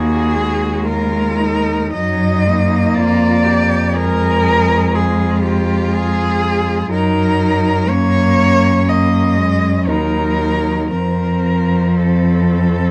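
Moving in a free, rubato 4/4, this melancholic and solemn classical passage for cello ensemble is cut from a longer piece. A warm, distant-sounding solo cello sits up front with an expressive, bowed melody full of vibrato and portamento. Beneath it, three rich-toned bowed cellos carry a smooth, even second line, a soft-attacked accompaniment and an expressive bass line that also sits up front, all wrapped in light reverb and a dark production.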